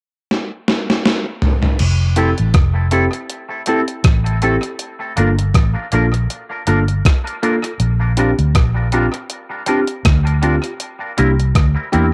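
An 80 BPM lovers rock reggae groove in F major with a swung sixteenth feel opens on a gated 80s digital drum machine fill from 0.3 seconds, its thumpy kick and gated-reverb snare sitting up front with a tape-softened, small-room character and analog delay. At 1.8 seconds a dark, round, foam-muted fingered electric bass enters over Fmaj7, Gm7, Bb6 and C7, and at 2.2 seconds a bell-like, bright tine electric piano joins with a clean, twangy electric guitar playing picked stabs, both touched with subtle chorus. The mood is romantic and sweet, with the homespun character of a home cassette recording and light reverb around this short cut from a longer piece.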